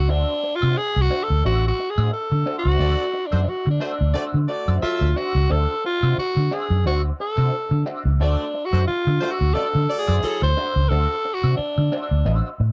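Over a swung sixteenth-note funk groove on a single D9 chord, a breathy, raspy tenor saxophone solos up front with gritty energy across this short, dry 1970s-style cut, anchored by a dark, round, foam-muted fingered bass and colored by a slightly broken-up electric guitar with wah and spring reverb, while a tight, clear horn section with light vibrato adds a second line from 2.8 to 10.5 seconds.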